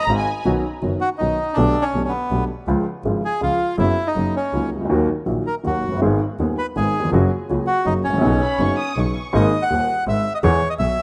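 A reedy, dark bandoneon carries the melody up front and dry throughout this playful, nostalgic tango fragment in 3/4, its rubato feel drifting over a woody upright piano accompaniment and a biting, earthy bowed double bass with light vibrato. A smooth studio violin section adds a brief second line at the very start and again from 8.4 to 9.3 s, just as the music moves into a new section that closes on an E chord. Light reverb and a studio ambience give it the feel of a rough home demo.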